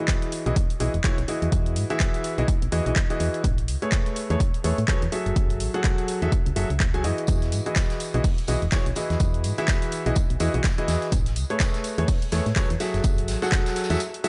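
A dark, intimate small-room sound frames this joyful piano house fragment, cut from a longer piece and moving at 125 BPM in E major with a 59% swing on the sixteenths. A clear concert grand piano sits up front with the riff from the start. Its audible action noise, deep bass and long sustain are treated with sidechain pumping and dub echo over chords of Emaj9, Amaj9 and F#m9. A punchy, tape-warmed electronic kick and a layered house kit of handclaps and hi-hats drive the groove, while a round, digital FM bass with a fast attack and decaying tone pumps beneath them from 0.5 seconds. At 7.3 seconds a distant, roomy soft-mallet kit joins in the background with hi-hat, a medium-tuned snare and tambourine, its filtered hats and percussion also pumping, before the feel-good music reaches a break at 14.0 seconds.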